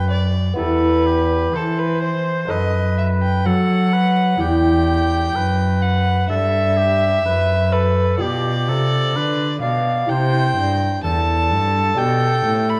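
A gut-string violin with a reedy, period-style tone carries the melody in this serene, flowing baroque-style sonata movement with continuo, heard as a section of a longer piece at 63 BPM in a straight 4/4. A clear oboe with vibrato sings a smooth second line beneath it, while a delicate fingerpicked lute on doubled gut strings and a bowed, nasal cello supply the accompaniment and bass, with the harmony settling into C major from 8.2 seconds. The dark production sits in the wet bloom of a recital hall.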